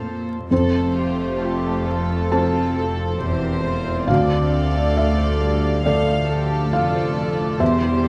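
Vinyl crackle and a moderate stage reverb frame this brief, tender and uplifting rubato film-score fragment. A muted, intimate upright piano with thick felt and audible action noise sits up front, while a soft, floating violin section carries the melody in the background over a darker, smooth-topped second violin line. A very quiet, ringing harp plays fingerpicked arpeggios, a distant cello section holds the bass, and a rich viola section and a shadowy double bass section join at 0.5 s, before the harmony moves from F to Dm.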